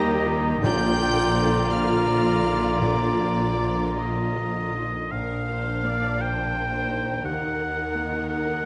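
A rich, focused violin section carries the melody from 0.6 s in this tender, hopeful cinematic fragment in Bb major, moving rubato in 6/8 at 52-58 BPM over a deep-voiced grand piano, lush viola and cello sections with portamento in the violas, a smooth double bass section and a soft-attack French horn section, while a clear oboe, an airy silver flute, a very quiet clarinet and a distant, dark second violin section add inner lines, faint timpani with medium mallets sound briefly, and a wet scoring-stage reverb surrounds the ensemble as the harmony moves from Eb to Bb and turns to Ebm at 7.3 s.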